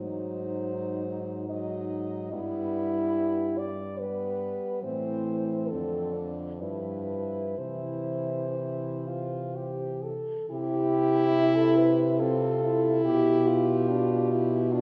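Tender and serene, this lyrical classical passage for horn quartet unfolds in an unhurried triple metre with a flexible, rubato feel, cut from a longer piece. Four French horns play together throughout its 14.8 seconds: the lead horn carries the melody up front with a mellow, vintage tone and light vibrato, while a second horn sings a softer inner line in the background, its soft attack and gentle vibrato blending beneath. A third horn, present and mellow, fills out the accompaniment in the middle register, and a dark-toned horn with a smooth top anchors the bass. The harmony drifts from an opening Ab7 through G, Am and Dm7/F before settling on C at 7.6 seconds, with a G7/B near the close pointing onward as a new section begins at 10.5 seconds. A reverberant recital-hall acoustic, like that of a church or concert hall, lends the ensemble a spacious, resonant glow.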